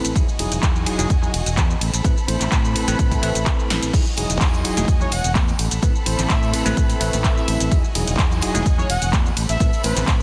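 A brassy, fat analog synth brass melody with chorus, cassette tape colour and tape echo arrives at 5.0 s in this joyful, feel-good filtered disco house excerpt at 127 BPM in E major. Beneath it, a bell-like tine electric piano with phaser and 12-bit sampler grit, clear bowed violin section chords and a bright fingered electric bass each pump with sidechain over alternating Emaj9 and Amadd9. A punchy analog drum machine with handclaps, hi-hat, ride, shaker, snare and crash plays alongside an electronic kick, both re-recorded in a large room; a drum fill lands at 3.7 s, very quiet tambourine and congas join at 3.9 s, and the dense, heavily limited mix sits in light digital reverb.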